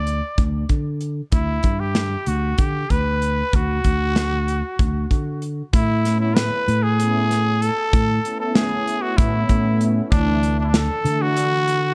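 A growling, raspy trumpet carries the melody in this driving, intricate progressive instrumental, its close-miked tone gritty and brilliant, with vibrato, scooped notes and a trail of tape echo. The band moves in an uneven 7/8 at 191 BPM counted in eighths, with a straight feel in D major. A fingered electric bass sits up front with a bright, amped sound, while a modern studio drum kit with a tight kick, medium-tuned snare and hi-hat adds an acoustic small-room punch. At 6.0 seconds a sawtooth analog pad enters with a soft attack, detuned and smoothed by chorus, holding mellow sustained notes over the Aadd9 harmony before the music settles on Dsus2. The production is dark and warm with little reverb, and this short cut from a longer piece keeps the trumpet, bass and drums close and present.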